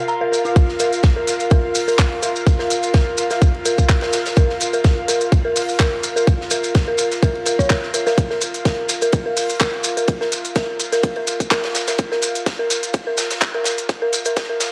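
Dry and gritty, with a cassette-tape grain and a light small-room ambience, this excerpt of minimal techno runs at 126 BPM in 4/4 with a slight swing on the sixteenths, and its mood is quirky and clinical. A dark, detuned FM synth bell carries the riff almost from the first moment, its eerie, inharmonic tones striking fast and decaying, softened by chorus and analog delay and pumping against the kick. Beneath it an airy, breathy pad of detuned sawtooth and triangle with a noise layer sustains a soft, warbling, vintage texture, also chorused and pumping. Grainy acoustic maracas ride along throughout, and from 0.6 seconds a tight, up-front electronic kick anchors the groove. With it, far in the background, comes an acoustic arena kit with a fat snare, bright cymbals, hi-hat and ride, and from 0.8 seconds a garage kit of crisp hats and handclaps joins in. The whole passage is a build-up, with a filter sweep on the synth bell running from 0.6 seconds to the end.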